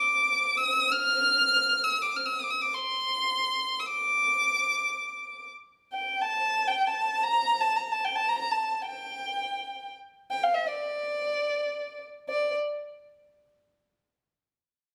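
Arabic maqam ensemble music in free time, cut from a longer piece, where a single dark, woody violin with light vibrato plays a longing, hypnotic bowed solo up front yet distant, ringing in a moderate recital hall reverb until 12.5 seconds.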